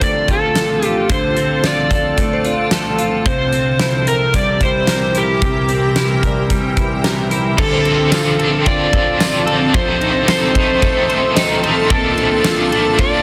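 A straight 4/4 pulse at 111 BPM drives this hazy, ethereal dream pop excerpt in D minor, carried by a huge arena drum kit with a fat snare, punchy kick, hi-hat, ride, crash and tambourine sitting up front in a big room. Over it, an overdriven slide guitar played with fingerpicks sings the melody between G4 and D5, its tone warm and trailed by digital delay. A clean, compressed electric guitar picks arpeggios through lush chorus and delay, while a shimmering ambient pad holds slow-attack, detuned chords with an octave-up granular sheen. A glassy, crystalline FM synth bell decays softly in the background until 12.1 seconds. At 7.6 seconds a bright, overdriven electric guitar joins the accompaniment with tremolo and chorus as the harmony moves from Dm7 and C7 toward F7 and Bbmaj7, all set in a moderate concert-hall reverb and a dense, heavily limited modern master.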